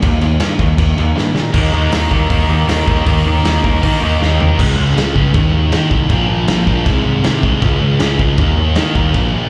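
A straight 4/4 pulse at 158 BPM drives this energetic, rowdy punk rock excerpt, heard as a live gig through the venue's PA with club reverb, where a growly fuzz-overdriven electric bass and a punchy, saturated garage drum kit with a medium-tuned snare sit up front alongside a sludgy, dark distorted guitar riff, while a bright, overdriven second guitar with slapback echo plays its riff only until 4.6 seconds, drum fills land at 1.2 and 4.2 seconds, and the chords move from Eb through Db5, Bb5 and Ab/C.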